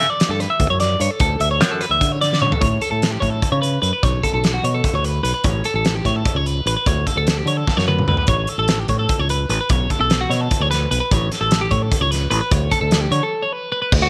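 Driving along in a straight 7/8, this playful, intricate piece of math rock and midwest emo sets a warm, clean, compressed twelve-string electric guitar picking arpeggios over a bright, growly fingered electric bass, both up front, as the chords move through lush sus2, add9 and maj7 colours. A loose indie drum kit with a fat snare, punchy kick and dark cymbals breathes in a pumping studio room, adding fills at 2.3 and 7.7 seconds before a break at 13.3 seconds. Light reverb and small room ambience give the sound a close, lively feel, and the passage is cut from a longer piece.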